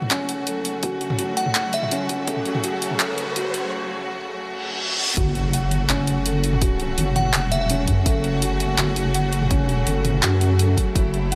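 Cinematic and heavy, this half-time drum and bass passage, cut from a longer piece, builds under a filter sweep with lush bowed strings pumping against a deep, up-front wobble bass, felt-muted piano arpeggios echoing through delay, overdriven drums with bright hats, handclaps and toms, a glassy, crystalline synth bell carrying 12-bit grit, and background riser and reverse cymbal effects, until an impact and the returning hard-clipped kick mark the drop at 5.2 seconds.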